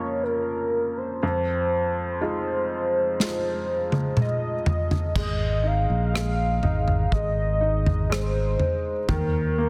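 A velvety, sustained synth lead carries the melody of this longing, emotional pop ballad, its smooth tone shaded with chorus and vibrato over a woody, slightly detuned upright piano. An airy acoustic drum kit played with bundle sticks enters at 3.2 seconds with a fill, and a punchy fretless electric bass joins up front at 5.2 seconds as the chords move to Ab. Light reverb and studio ambience surround a dense, heavily limited modern master, in this excerpt cut from a longer piece.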